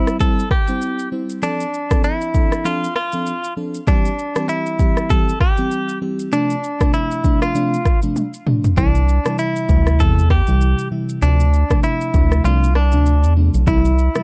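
A twangy, clean electric guitar carries the melody over a crystalline FM electric piano treated with chorus and phaser, with a deep house drum kit of deep kick, rim click, shaker and toms arriving at 0.1 seconds in this breezy, romantic afrobeats piece at 98 BPM with a swung 16th feel. The chords alternate between C and Dm7, and the picked guitar sits in plate reverb. After a drum fill at 8.2 seconds, a round analog bass enters up front at 8.8 seconds, deepening the dark, lightly reverberant production.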